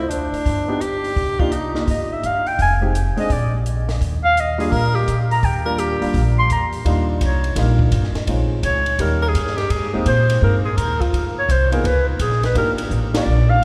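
A relaxed, swinging 4/4 pulse at 169 BPM drives this short small-group swing and bop passage in Eb major. Woody, thumpy pizzicato upright bass sits up front beside a compact cocktail kit with a dark, smooth sound, a high-tuned snare and a punchy kick, while a baby grand piano with long sustain comps from 0.7 seconds. A mellow, vintage-toned clarinet with subtone and vibrato carries the melody from 1.9 seconds, a warm tenor saxophone adds brief second-line phrases, the whole band lands an accent at 13.1 seconds, and a wet church reverb gives the recording a spacious hall sound.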